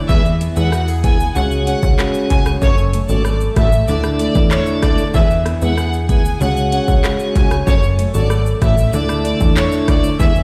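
Dancehall in F# minor at 95 BPM, this short cut from a longer piece feels tough and hypnotic, riding a straight 4/4 groove through a looping progression of E, C#sus4, F#m and Dsus2. Up front, an electronic afro-pop kit with a deep kick, metallic hats, handclaps, rim clicks and shaker carries an overdriven edge, while a punchy, funky analog bass with a fast-attack filter pluck and wave-folded grit sits just as forward in the low end. A fingerpicked steel-string acoustic guitar spins bright arpeggios with fresh-string sparkle and audible finger squeak, and a tonewheel organ adds piping, scooped accompaniment through a slow rotary speaker. Above them, a clear, focused violin section bows the melody with vibrato from a distant position, its line trailed by delay. At 7.7 seconds a very quiet egg shaker joins, close and dry, and the whole mix sounds as if played on a big system in a bare room, with stone room reverb.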